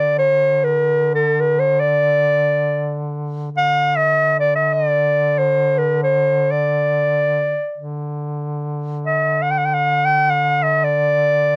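A dry, close 1970s-style studio sound with a short booth ambience frames this festive, stately Arabic maqam ensemble piece, cut from a longer work, where a clear, classical-style clarinet carries the melody up front while a warm, folk-style duduk holds a low drone with vibrato, soft attacks and scooped notes throughout the 11.6 seconds.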